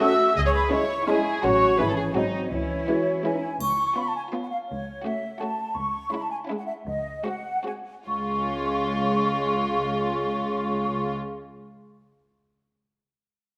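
A soft, floating studio violin melody carries this sneaky, quirky, whimsical film cue in three, joined by an airy, up-front flute ensemble, an intimate chamber violin line and dark chamber violas and cellos, while a very quiet clarinet, a mellow background bassoon and sustained French horn chords fall away by about 3.5 seconds, a rich double bass section sounds only briefly near the start, a close, dry triangle chimes at 3.6 seconds, and the music slows from 5.2 seconds inside a wet scoring-stage reverb.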